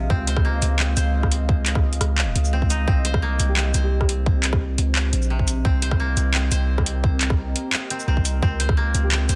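A dense, heavily limited modern mix with light reverb frames this tense, spacious passage of half-time drum and bass, cut from a longer piece, moving at 173 BPM in 4/4 and centred on C phrygian. A deep, dark ambient pad of detuned sawtooth unison with a sub octave sustains slow-attack chords through chorus, built-in reverb and sidechain pumping, drifting from Db6 to Cm around 2.9 seconds and back to Db6 near 8.4 seconds. Over it, a dry, woody koto played with fingerpicks spins arpeggios through digital delay, while a long sine-based 808-style bass sits up front with a fast attack and decaying tail. A tight, layered electronic kick and a produced drum kit of handclaps, metallic hi-hats, rim clicks and shaker, both re-recorded in a small room, drive the groove, with the kit placed prominently forward. In the background, a soft, breathy flute-like synth lead with vibrato, lush chorus and delay surfaces only briefly, touching a single G4 from 3.5 seconds.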